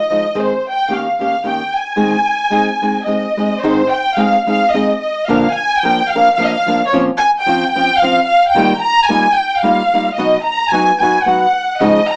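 Mexican folk in a mariachi vein, this festive, proud fragment moves at 110 BPM in 3/4 with a lilting swing, set in Ab major and cut from a longer piece. A dark symphonic violin section carries the melody from the first moment, its bowed ensemble sound lush and full of expressive vibrato, sitting up front yet carrying a distant, shadowed quality. Beneath it, a flamenco guitar supplies fingerpicked acoustic accompaniment, entering at 0.1 seconds with a warm tone that also sits close in the mix. The harmony moves from Ab over Eb through Eb7 and Ab, then shifts toward Bb, a rootless Bbmadd9 and Ebadd9 before landing on a surprising B near 10.2 seconds. A short, wet small-room reverb surrounds the players, and the rough home-demo mix has a small-speaker character.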